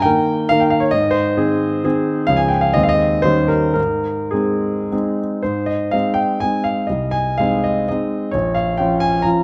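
Classical romantic piano music: a triple-time dance in 3/4 with dotted rhythms, heard in a brief excerpt cut from a longer piece. The mood is nostalgic and wistful, and the rubato lets the tempo drift between 99 and 146 BPM. A solo grand piano carries everything from 0.0 to 9.4 seconds, ranging from Bb1 up to Bb5 in Ab major, tuned slightly low with A4 at 436 Hz. Its tone is clear and natural, placed up front and intimate, with the mechanical sounds of the action audible beneath the notes. The harmony moves from Eb through Ab, Db and an Eb7 back to Ab, and a second section begins at 5.5 seconds, touching Ab/C before arriving on Bbm. Close, detailed microphones and a light reverb keep the sound near and detailed.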